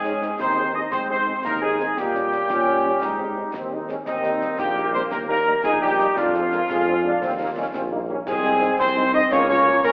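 A spirited, rousing wind-band march in 6/8, heard through a narrow telephone-like filter and a wet scoring-stage reverb, opens at once with a dark, distant trumpet section carrying the melody over a wooden, vibrato piccolo, a mellow euphonium and woodwind section on second lines, sustained chords from a dark trombone section, a very quiet French horn section that drops out at 9.7 seconds, a smooth-topped tuba on the bass, and snare, bass drum and dark clash cymbals tucked dry in the background.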